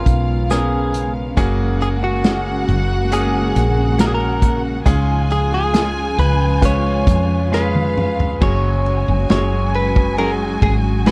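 A straight 4/4 pulse at 68 BPM carries this tender, emotional pop ballad in F# major, where a clean, compressed electric guitar sings the melody over a brilliant, polished grand piano, a woody fretless bass sitting up front, smooth bowed strings in the background and a distant, roomy acoustic drum kit with dark cymbals and bundle sticks, while an expressive violin section enters at 1.4 s with a close, vibrato-rich second line, and a drum fill from 7.5 s ushers in a new section at 8.4 s, all in a dry mix marked by lossy compression artefacts.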